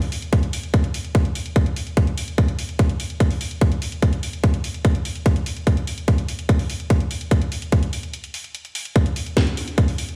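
An up-front electronic kick drum drives this intense, psychedelic trance excerpt, its tight, layered punch entering at 0.3 seconds and sitting well forward in the mix. Behind it, a garage drum kit plays from the very start, adding a cracking snare and bright hi-hats that sit much lower in level than the kick. The metre is a straight 4/4 with an energetic trance pulse. The whole passage plays as a single section, with a short break between 8.1 and 9.0 seconds before the kick drops out at 9.9 seconds. The sound is that of a big system in a bare room, with a large studio reverb that gives the drums a cavernous, digital sheen.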